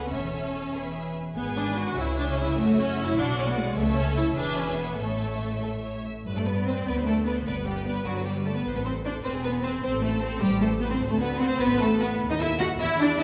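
A rubato 6/8 pulse at 100 BPM in dotted quarters drives this quick, cheerful and graceful classical-period movement for string orchestra, which moves from A major into G major at 6.3 s. A focused first violin section carries the melody with vibrato, over a smooth, even second violin line and a studio-toned viola section that fills in the accompaniment. The bass rests on an expressive, close cello section with soft attacks and portamento, joined by a clear, intense double bass section, all set in a church or concert hall with a wet recital-hall reverb of about 1.5 s in this passage cut from a longer piece.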